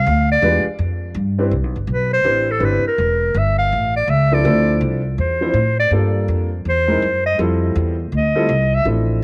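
Small-group swing jazz at 164 BPM in C major, relaxed and playful, with a clear clarinet carrying the melody with light vibrato and stepping into a solo at 1.5 seconds, while a woody, growly pizzicato upright bass sits up front alongside it and a smooth, vintage-toned grand piano comps from 0.4 seconds through rich changes like Cmaj9, Dm9 and C7alt in a small room with light reverb.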